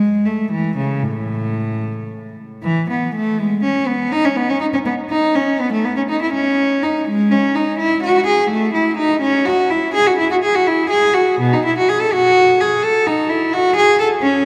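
A cavernous cathedral reverb with a 4.4-second decay surrounds a single cello, which still sits close and up front in the sound. This is a baroque-style suite movement for unaccompanied cello in E major, with a radiant, flowing mood. It moves at 83 beats per minute counted in dotted quarters, in a 12/8 whose beats fall unevenly with free rubato. Tuned to A4 = 438 Hz in period style, the bowed cello has a rich gut-string tone with a reedy edge as it ranges from A2 to A4. The solo line plays throughout this 14.4-second excerpt from a longer piece, opening a passage that returns at 2.6 seconds and carries on to the end.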